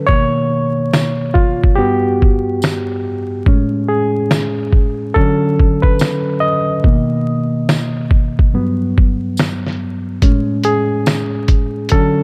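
Dreamy and nostalgic, this lo-fi hip hop excerpt moves at a relaxed 71 BPM in 4/4 with a lilting swing on the sixteenths, all under a soft blanket of vinyl crackle. A barky, reedy electric piano sits up front and carries the piece as a solo, its bright, clean tone heard through built-in speakers yet dulled by cassette tape and a low-pass filter as it moves through lush major-seventh and ninth chords, from Bmaj9 through Gmaj7, Amaj7 and Dmaj7. From 0.1 seconds a sampler-style drum kit joins, pitched down, compressed and muffled, with a thumpy kick, a medium-tuned snare, hi-hat and finger snaps giving it a tape-soaked, close presence. A jingly, saturated tambourine sits far in the background from 0.9 to 11.3 seconds. Light reverb and digital ambience lend the cut a hazy, late-night glow.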